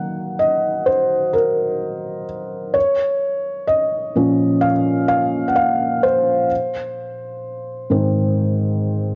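In a straight, unhurried 4/4 pulse, this short fragment of a longer pop piece unfolds as a solo for felt-muted upright piano, emotional and heartfelt in mood. The piano sits up front with a soft, dark, intimate tone, its thick felt dulling every note while the action noise of the instrument stays clearly audible. Played through the full 9.2 seconds, it ranges from Ab2 up to Gb5, moving from Ebm to Bbm and settling on Ab at 6.5 seconds. A cassette tape character colours the piano, and light reverb with small room ambience gives the sense of a home recording. The result feels private and close, like someone playing quietly for themselves.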